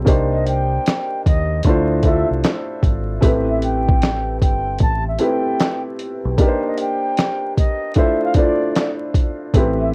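A soft, intimate felt-muted upright piano, filtered and tape-worn, opens this hazy, melancholic lo-fi hip hop excerpt at 76 BPM alongside a deep, round fingered electric bass, before a gritty, compressed sampler-style drum kit with thumpy kick, fat snare, hi-hat and handclaps enters at 0.1 seconds and a distant, airy concert flute takes the melody from 0.3 seconds through tape echo, the chords moving through Cm9, Dm9 and Am9 in a homespun cassette sound with light reverb and vinyl crackle.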